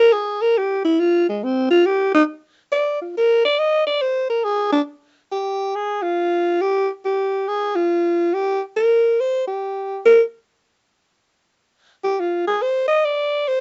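Swung eighths at 139 BPM in 4/4 carry this sophisticated, swinging jazz passage, cut from a longer piece and tuned slightly low to A4 = 438 Hz. A lone alto saxophone plays up front for the full 13.6 seconds, its growling, raspy subtone and scooped notes grounding the first phrase before the music moves into a new section at 5.3 seconds. The small room lends a modest halo, and the rough home-demo sound keeps the top end muted.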